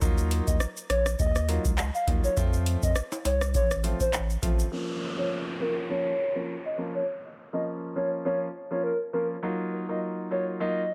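Dancehall with a tough, sultry mood, this dry passage opens on a booming analog drum machine with a deep kick and metallic hats, a thick, saturated sub bass, and bright egg shaker and timbales in the background, which stop at 4.7 s to leave an up-front grand piano with sidechain pumping and a hollow, woody clarinet-like synth lead with chorus, vibrato and digital delay, joined by an electronic downlifter and a filter sweep.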